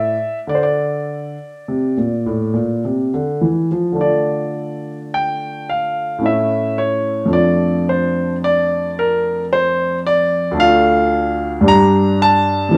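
Captured by close, detailed microphones in a moderate recital-hall reverb, a polished, present baby grand piano plays solo in this flowing, serene baroque-style classical suite movement in D minor, taken from a longer piece, moving in a rubato 3/4 at 50-56 BPM with a long-sustaining tone that spans D2 to Bb5 as the opening passage gives way at 4.0 seconds to harmony that turns through Dm, A, Dm/F and Gm.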